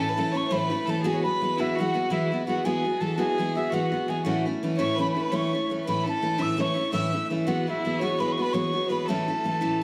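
A lively, rollicking Celtic slip jig in a straight 9/8, this excerpt sets a pure, soft-attacked wooden whistle on the melody above a rich, lightly vibratoed bowed fiddle on a smooth second line, while a bright, full-bodied picked steel-string acoustic guitar sits up front with accompaniment moving between A and Eadd9, all bathed in a wet recital hall reverb.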